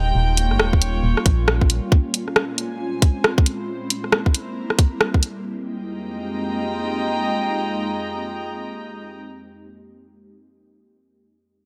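UK garage in a two-step style, this soulful, late-night cut from a longer piece moves at 136 BPM in F minor with a swung sixteenth feel. An ethereal, airy pad holds sustained chords throughout, its chorused, mellow tone pumping against the sidechain. Alongside it, a dark chamber string section adds a nasal, reedy, gut-string texture that also pumps and fades out across the opening stretch. A hollow, organ-like FM bass with a fast, decaying attack sits up front but drops away at 1.8 seconds. A garage kit with bright hats and rim clicks, plus a tight, overdriven electronic kick, drives the groove until roughly 5.3 seconds, when the harmony moves from Eb9, Bbm9 and C7 onto a closing Fm11 under a light reverb.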